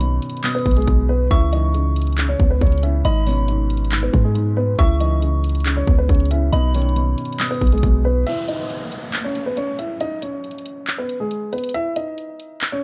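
A deep, boomy 808-style bass with a sine body, a noise layer and a fast, decaying attack sits up front in this dark, brooding half-time trap fragment cut from a longer piece. Beside it, an electronic trap kit with a hard-clipped kick, bright hi-hats, handclaps and crash cymbal carries a small-room grit. A dark baby grand piano, mellow and intimate with audible action noise and short sustain, carries the melody. A soft, felt-muted upright piano supplies the accompaniment, and a pure FM synth bell with chorus and digital delay adds a gentle second line high above. The bell fades out at 7.8 seconds, and by 8.3 seconds the bass and upright have also dropped away for a break, leaving the grand piano and drums over an electronic downlifter that runs until 11.7 seconds. The mix is close and dry, with a warm, shadowy production.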